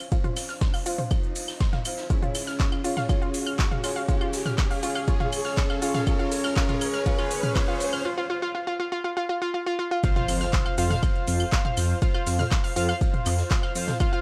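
A dry, gritty hardware recording in a digital ambience carries this melancholic, driving melodic techno in F minor at 121 BPM, cut from a longer piece. A round, warbling analog pluck arpeggio joins fat, brassy analog synth stabs with chorus and vibrato, both filter-swept and sidechain-pumped through the build-up. Beneath them sit a tape-warm electronic kick up front, a deep house kit of claves, handclaps, smooth hats, shaker and toms, and a compressed sampler-style kit of hi-hat, ride and snare in the background, while an electronic riser and impact hover behind; after a break, the drop lands at 10.0 s, and at 10.3 s a menacing, detuned saw bass swells in up front on F2.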